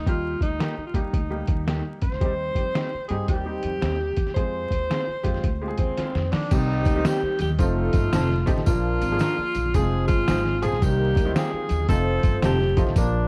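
Uptempo 1960s-style soul at 112 BPM with a swung, driving and urgent feel, this excerpt puts a roomy tenor saxophone melody and a gritty, overdriven sampler-style drum kit up front, its thumpy kick and fat snare muffled and pitched down, over a woody pizzicato upright bass and a brilliant baby grand piano with audible action noise sitting in the background. A slightly broken-up electric guitar adds picked stabs, and from 2.2 seconds a dark horn section with octave doubling and analog delay plays a smooth second line. After a drum fill, congas and a jingly tambourine join at 6.5 seconds as the harmony moves through Cm, F7 and Bb, all under light reverb and vinyl crackle.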